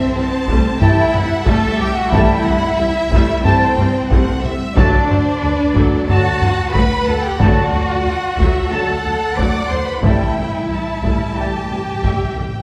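A straight 4/4 pulse at 91 BPM is driven by a heavy-sticked taiko ensemble, the loudest part, which enters at 0.5 s in this dramatic, relentless cinematic orchestral excerpt in A dorian. Up front, a lush cello section carries the bass with vibrato and expressive portamento, supported by a rich, distant double bass section in the background. A bowed violin section sings the melody close by with a soft attack, while a second, smoother violin section plays a higher line in the background and a focused chamber viola section fills in the accompaniment beneath. Brass arrives at 0.8 s: very quiet, tight French horns and punchy, close-miked trombones hold sustained chords, and a trumpet section adds stabs with light vibrato. The harmony moves from Am7/C to D, and as it returns to Am7/C, round, calf-headed timpani played with soft mallets join at 10.1 s for a fill. The music sits in a wet scoring-stage reverb, heard from further back in the room.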